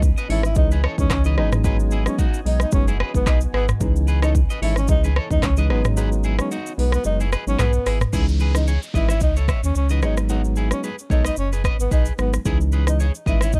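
A breathy, whispered tenor saxophone carries the melody with vibrato and digital delay over a sultry, mellow afrobeats groove at 111 BPM in C# minor, backed by a deep, up-front sub bass, an electronic afro-pop drum kit with a deep kick, metallic hats, handclaps, rim clicks, shaker and toms, a worn, slightly out-of-tune tine electric piano, a twangy, slightly broken-up electric guitar riff with delay, a very quiet evolving ambient pad that drops out at 8.1 seconds as a background downlifter enters, all in a dark, dry production cut from a longer piece.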